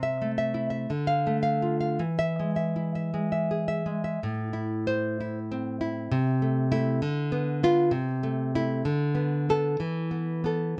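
This is a romantic piece for solo classical guitar, a brief passage cut from a longer work, passionate and intimate in mood. A single nylon-string guitar carries everything, fingerpicked and dark in tone, sitting up front with audible finger squeak on the strings. The music moves in a lilting 6/8 with a flexible rubato feel, so the pulse breathes and stretches. The opening phrase moves from A minor over C through D minor to E, and a second passage from 4.2 s returns to A minor before drifting through diminished and minor-seventh colours to a suspended E chord. Close, detailed microphones capture the instrument with intimate clarity, and a light reverb adds just a touch of space around it.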